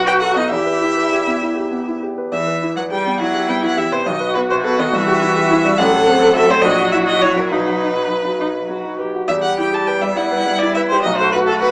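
Dark, mellow baby grand piano, portamento-tinged viola and rich bowed cello open together on a B chord before a smooth, vibrato-laden violin takes the melody at 0.1 seconds in this urgent, stormy excerpt from a quick classical-period piano quartet movement in E minor and 6/8 at 69 BPM (dotted quarters), its harmony moving from E minor through C, F#dim/A and F#7/A# to B before settling back on E minor, all heard with light reverb through a small-speaker sound.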